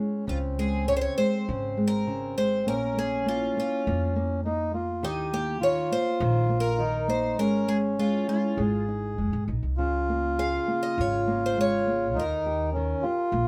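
A mellow, reedy accordion and a thumb-plucked classical nylon-string guitar open this mournful, passionate fado-style ballad, which moves with a loose rubato feel in this fragment of a longer piece. From 0.3 seconds a picked twelve-string acoustic guitar carries the melody up front with a boxy, shimmering, octave-doubled tone from old strings, while a pizzicato upright bass adds a woody low line. The accordion sits close as a round second voice, and moderate studio reverb gives the ensemble a modest sense of room.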